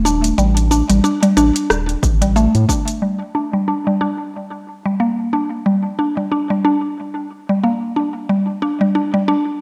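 Organic downtempo in G minor at 91 BPM, with a lightly swung 16th-note feel and a mystical, warm mood. A woody, mallet-like synth pluck plays up-front arpeggios colored by chorus, phaser, vintage 12-bit sampler grit and analog delay, over a deep, dark analog bass with sidechain pumping and an overdriven deep house kit of metallic hi-hats, rim click and shaker, joined briefly by a punchy electronic kick from 2.0 s. From 3.0 s the pluck carries on alone under a filter sweep until 9.6 s, as the harmony moves from Ebmaj7#11 to G5 and then D5, all set in a moderate recital-hall reverb on a dry, gritty hardware recording cut from a longer piece.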